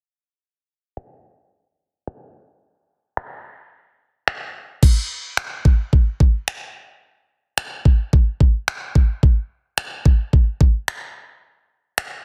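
Pop at 109 BPM in straight 4/4, this energetic, confident cut features a smooth R&B drum kit that enters at 1.0 seconds, with a knocking kick, finger snaps and crash cymbal sitting up front, and soft clipping on the snare giving it a tape-warm, electronic, produced edge. A filter sweep runs through the opening until 4.8 seconds, where the next section begins. The dense, heavily limited mix is dry and low-pass filtered.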